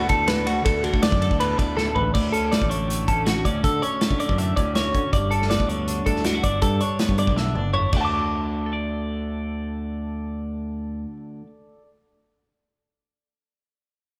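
Captured as a band playing live in one room with light reverb, this intricate, playful math rock and midwest emo excerpt pairs two twangy, clean, compressed twelve-string electric guitars with spring reverb, one, up front, carrying the accompaniment and the other picking bright arpeggios over chords moving from Dmaj7 to Gadd9, above a growling overdriven fingered bass and a loose indie drum kit placed forward, with a tight kick, dark cymbals and a pumping small-room sound, which drops out at 8.0 s after a fill, leaving guitars and bass to carry on until the cut at 11.9 s.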